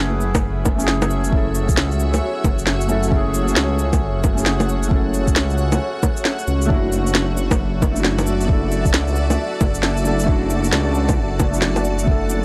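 A deep, rumbling detuned saw bass sits up front in this ghostly, melancholic future garage excerpt, its beating unison tone pumping against the sidechain throughout. An up-front kit of electronic cabasa, bongos, shaker and a woody snare enters at 0.2 seconds, joined at 0.3 seconds by a soft, tape-warm electronic kick, all re-recorded in a small room and carrying a swung 16th-note feel. Above them, a felt-muted upright piano plays intimate, mellow accompaniment with audible action noise, its notes trailing into tape echo and breathing with sidechain pumping. A bright granular cloud pad holds blurred, evolving chords with a slow attack and long release, bathed in its own reverb. The harmony moves from F#m7 to Dadd9/F# at 6.7 seconds, and the whole mix has a dry, gritty hardware character set in a digital ambience.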